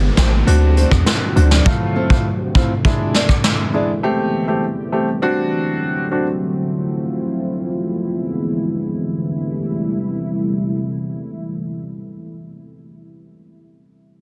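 A straight dancehall groove in 4/4 opens this hypnotic, tough fragment of a longer piece. It has a vintage brush drum kit up front with a punchy, soft-clipped kick and snare, a heavy 808-style bass that stops at 1.6 seconds, and a very quiet electronic downlifter. Dark, fingerpicked nylon-string guitar arpeggios with finger squeak sit beside a warm grand piano with long sustain that plays until 6.3 seconds. Also up front, a deep, moody sawtooth pad with chorus, reverb and sidechain pumping holds sustained chords through to 11.9 seconds.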